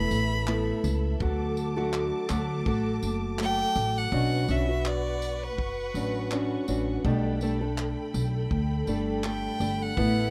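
Acoustic pop with a carefree, easy-going mood, this short cut from a longer piece moves at 82 BPM in 4/4 with a light swing on the sixteenths. A clear, focused violin carries the melody up front, bowed with vibrato by a single player sitting close to the listener. Beneath it, a fingerpicked steel-string acoustic guitar supplies warm accompaniment, while a pizzicato upright bass adds a woody, thumpy low end. A rich, smooth string section holds lush sustained chords from a distance, and a modern studio drum kit brings handclaps, tambourine and a punchy kick. The harmony moves from Asus2 to D, then shifts at 4.1 seconds to Bmadd9 and Gadd9/B, all wrapped in light reverb with the rough feel of a home demo mix.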